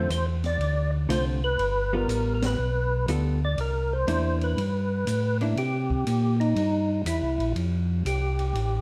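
A percussive tonewheel organ carries a greasy, soulful melody over a round, mellow organ bass line and dark, compressed hollow-body guitar comping, with an open acoustic drum kit of dark cymbals, high-tuned snare and boomy kick, in this swung 4/4 soul jazz organ trio cut at 121 BPM. The band hits an accent at 2.3 seconds, and the guitar drops out at 5.6 seconds as the fat, key-clicking lead organ, colored by chorus vibrato, slow rotary speaker and plate reverb, takes a solo to the end. Both organs sit up front in a moderate large studio reverb, with the drums low in the mix.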